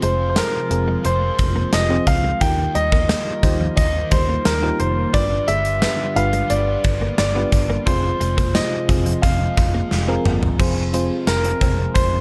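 A dramatic, moody 1980s-style pop piece in F minor at 88 BPM opens with an intimate, up-front concert grand piano carrying the melody over mellow FM electric piano, a swirling phased analog pad, a dark overdriven guitar with lush chorus, a compressed clean guitar riff in the background, a round foam-muted fingered bass, and a punchy gated drum kit with bright cymbals and tambourine that plays a fill at 9.9 seconds before a new section at 10.6 seconds, all under light reverb.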